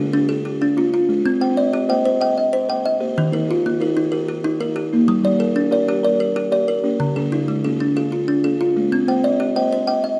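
A rippling, hypnotic 12/8 cycle at 125 BPM drives this short cut from a longer piece of southern African traditional mbira-style music in C equiheptatonic, tuned to A4 = 438 Hz, where a bright, woody kalimba with a solid-board thumbnail pluck sits dry and up front beside a mellow, buzzing kalimba with a hollow-box fingertip tone, both spinning arpeggios over Dm, Cm, Eb and Gm in a moderate recital-hall space.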